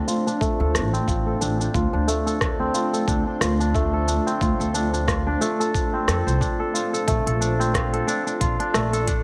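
Organic downtempo with a hypnotic, mystical mood, this short cut from a longer piece rides a gently swung sixteenth-note groove. A bright, ringing kora sits up front from the start, fingerpicking arpeggios through a low-pass filter that sweeps across the whole passage, with tape echo trailing its crisp notes. Beneath it, a granular cloud pad holds blurred, evolving chords with a mellow, full-bodied glow, its built-in reverb and sidechain pumping giving it a breathing motion. The drums come in at 0.1 seconds as electronic hi-hat, rim click and shaker re-recorded in a small room. A gritty, thumpy sampler-style kick with compressed punch follows at 0.4 seconds, and a woody pizzicato upright bass enters at 0.6 seconds. The harmony rests on Dm7 before shifting to Bbmaj7 near the close, the mix sitting in a light, small-room ambience.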